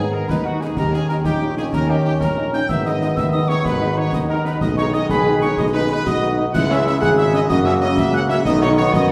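A stern, martial military-style march for wind band in 6/8, cut from a longer piece: a mellow trumpet section carries the melody, an airy, hollow piccolo and a solo euphonium add second lines, and a very quiet French horn section accompanies. A tight trombone section holds sustained chords in the background, a solo tuba anchors the bass, and concert snare drum, concert bass drum and dark clash cymbals enter at 0.3 s, the band heard in a church or concert hall with a wet recital-hall reverb.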